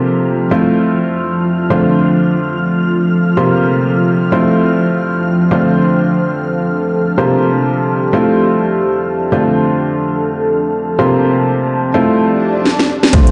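A woody, intimate upright piano riff with dub echo opens this bittersweet, soulful piano house passage over silky, detuned string pad chords with vintage sampler grit and a deep, moody ambient pad, all three pumping to the sidechain in a roomy reverb, until an electronic swell enters at 12.3 s, an overdriven house kit with cracking snare, metallic hats, ride and shaker plays a fill from 12.7 s, and a punchy kick lands with a brief hollow, organ-like FM bass note and a barely audible hi-hat at 13.1 s.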